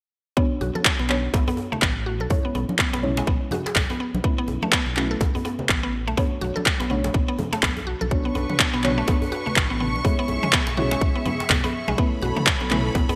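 At 0.4 seconds a punchy electronic kick, a woody mallet-like synth pluck playing arpeggios and a deep, mellow chord stab with chorus, phaser and delay open this spiritual, earthy afro house passage at 124 BPM in B dorian, with a swung 16th feel over chords moving from Bmadd9 through C#m/B, Aadd9/B and Dmaj7/B. A dark, rumbling detuned saw bass pumps beneath, while ringing congas and a cracking, saturated djembe sit in the background and an up-front house kit of handclaps and toms with gated reverb drives the groove. At 8.1 seconds a bowed studio string section enters with soft, intimate sustained chords played sul tasto with vibrato, all within a bright 1980s-style digital production and light small-room ambience.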